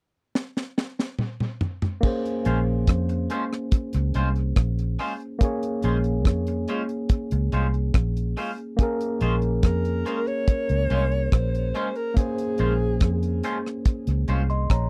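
Lovers rock reggae with a smooth, bittersweet mood, cut from a longer piece and recorded dry and close in a 1970s studio manner. A deep, up-front drum kit with a high-tuned snare, tight kick and dark cymbals opens with a fill; at 2.0 seconds a worn, slightly out-of-tune tine electric piano with tape echo settles on a Bbm9 chord, joined by a round, foam-muted fingered bass and twangy, scooped electric guitar stabs through a phaser. A breathy, mellow alto saxophone with vibrato and tape echo takes a short jazz-style solo melody from 9.6 to 13.4 seconds.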